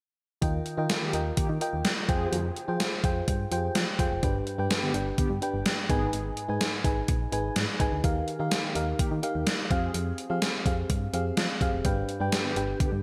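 1980s-style pop at 126 BPM in Eb major, this uplifting, glossy passage is cut from a longer piece and moves through a chord cycle of Ebadd9, Fmadd9, G and Abm. A gated digital drum machine sits up front, its thumpy kick and overdriven, gated-reverb snare carrying a sampler-style electronic punch alongside the hi-hat, all re-recorded in a small room. A punchy, round FM bass with a fast, decaying attack anchors the low end with a dark, digital tone. Up front, an FM electric piano supplies the accompaniment with a warbling, vintage sound that has a noise layer and a mellow decay. From 1.0 s, mellow synth brass stabs arrive in the background, detuned sawtooth tones with a filter sweep, coloured by chorus, phaser and delay. A moderate, lush hall reverb surrounds the bright digital production.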